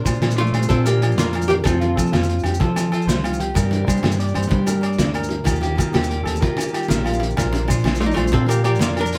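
Joyful highlife guitar band in 12/8, where an up-front, dark, hollow-bodied archtop guitar carries the melody from 0.4 to 2.9 seconds and returns at 8.0 seconds over twangy, slightly broken-up electric guitar arpeggios, a bright jumbo acoustic guitar fingerpicked with finger squeak in the background, a round, punchy fingered electric bass, a muffled, gritty cloth-damped drum kit with fat snare and tight kick, high-tuned ringing congas, background agogo bells and grainy maracas, the band heard playing live together in one room with moderate studio ambience.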